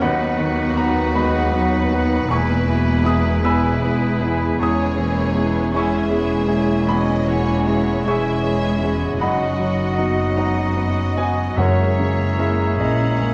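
An intimate baby grand piano with audible action noise leads this lyrical, passionate romantic excerpt for piano and orchestra in B major, moving in a slow, rubato 12/8 at 46-54 BPM. Violin sections carry the melody and a lush background line, joined by an airy flute group, a present oboe and a vintage-toned clarinet. Smooth violas and mellow French horns supply accompaniment and sustained chords over woody double basses and quiet cellos, while close, dry timpani enter at 11.6 s, all set in a wet scoring-stage reverb with a dark, warm production.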